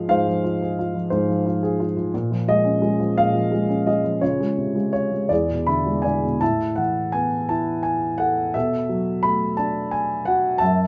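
A dark, mellow grand piano, up front with long sustain, carries this tender, warm classical solo in a rubato 6/8 at 54-60 BPM, ranging from E2 to B5 through chords such as Ab6, Dbmaj7 and E7 before a fill at 5.3 s leads into a new section at 6.4 s on Asus2 and Bm7, all in light reverb with the highs rolled off above 7.5 kHz, cut from a longer piece and ending at 10.9 s.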